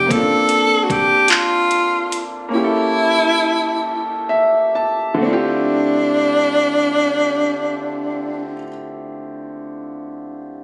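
A slow, straight six-eight pulse, counted in dotted quarters at 41 to 51 BPM, gradually slows through the opening of this sultry, late-night R&B fragment in D minor, cut from a longer piece. A produced electronic drum kit sits up front with a knocking kick, metallic hi-hats and handclaps, all tape-tinged, but it drops out by 2.3 seconds. The grand piano carries the accompaniment across a broad range, sounding warm, boxy and intimate, with audible action noise and long sustain. As the harmony moves from Bbmaj7 to A7b9, it plays a fill from 3.8 seconds that leads into Dm11. Over it, a breathy tenor saxophone plays a jazz-style solo melody, close-miked and whispered, with vibrato and a soft attack, until 8.6 seconds, after which the piano rings on alone. The phone recording of the room carries light reverb and small-room ambience, with added studio reverb and compression.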